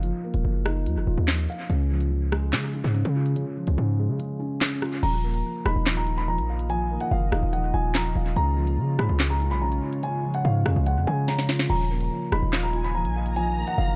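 A hard-hitting 808-style bass anchors this dark, cold drill excerpt, its punchy, heavy sine tone carrying a noise layer and sitting up front from the start at 144 BPM in a half-time 4/4 feel. Beside it, an electronic drill kit with a sharp snare, crisp hi-hats, rim clicks, handclaps and crash cymbal runs through a dub echo, while a soft, felt-muted upright piano lays down mellow accompaniment with audible action noise over chords moving between Ebsus2 and Db. The kick drops out from 4.2 to 5.0 seconds, and at 5.0 seconds a dark concert grand piano enters with a boxy, intimate melody high in its range, also treated with dub echo. A deep, moody ambient pad built from detuned sawtooth and sine layers with a sub octave swells in behind at 6.1 seconds, softened by chorus and its own reverb, and a drum fill cuts through just before the chords return to Ebsus2. In the final moments a distant, lush violin section adds a bowed second line with vibrato and portamento, all set inside an echo-heavy studio reverb.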